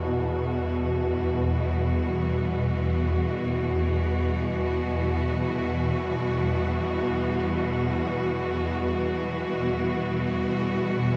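Floating in free time, this unsettling dark ambient drone in E minor pairs a swarming, detuned granular sine drone, filter-swept until 9.8 s, with a lush bowed cello section holding sustained Emadd9 chords with vibrato and shimmer reverb, both up front, the cellos close. A very quiet quartz singing bowl, struck with a wooden striker, rings with pure, slow-beating tones until 9.9 s. Everything sits in a cavernous cathedral reverb with a cassette-tape grain, and the clip is cut from a longer piece.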